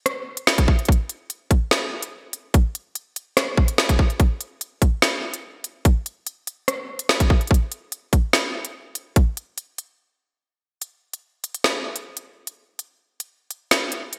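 Hip hop at 145 BPM in 4/4 with a half-time feel, this menacing, cold passage cut from a longer piece rests entirely on an electronic drill drum kit that enters at 0.1 s and sits up front, with a hard-clipped kick, woody snare, crisp hi-hats and rim clicks under gated reverb and a tape-warm tint. The production is bright and 1980s-styled, set in light digital ambience. A break arrives at 10.0 s and leads into a new section at 10.8 s that carries on to the close.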